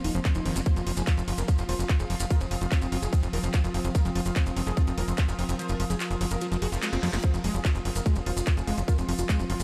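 This intense, alien psychedelic trance excerpt at 146 BPM opens with a thick, detuned unison lead carrying the melody through phaser and tape coloring, over an evolving wavetable pad, a breathy, warbling pad and a punchy, nasal sequencer bass, while an overdriven drum kit adds cracking snare, bright hats and handclaps. A squelchy, very quiet acid bass riff and grainy, distant maracas join almost at once, and an overdriven electronic kick sits up front, with the lead and both pads pumping against the beat. The kick drops out at 5.6 seconds as a faint reverse cymbal rises at 6.7 seconds into a drum fill at 6.9 seconds.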